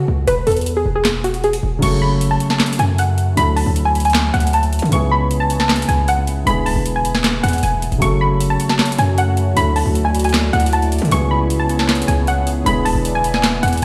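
A warbly, lo-fi pluck with a detuned sawtooth edge carries the melody, washed in chorus and tape echo over a punchy, heavy 808-style bass in this dark, brooding half-time trap piece at 155 BPM in F# minor. Overdriven trap drums with a sharp snare, metallic hi-hats, handclaps and crash cymbal arrive at 0.3 seconds, a mellow baby grand piano with long sustain joins at 1.8 seconds as the chords cycle through F#m, Dadd9, C#m7 and E7, and a nostalgic tape-like pad with chorus and phaser fills in from 8.0 seconds. Light digital reverb and the stony echo of a big sound system in a bare room surround the whole mix.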